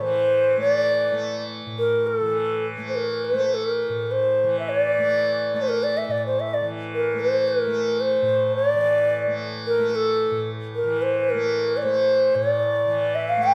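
Meditative and solemn, this Hindustani classical fragment in a seven-beat metre sets a pure, hollow bamboo bansuri up front, its tongued melody carrying vibrato, over a softly plucked, buzzing tanpura drone that shimmers low in the mix, the two played live together in one room with wet, large studio reverb as the pulse speeds up across its 13.5 seconds.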